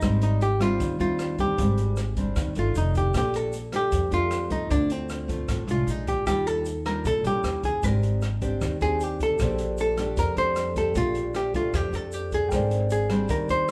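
A romantic, sophisticated bossa nova fragment opens with a dark, clean, up-front archtop guitar picking the melody over fingerpicked nylon-string guitar, woody pizzicato upright bass, a smooth jazz kit of hi-hat, rim click and boomy kick, and a grainy egg shaker in the background, the band playing live together in a large studio room, until a very quiet, warm concert grand piano joins the accompaniment at 9.4 seconds.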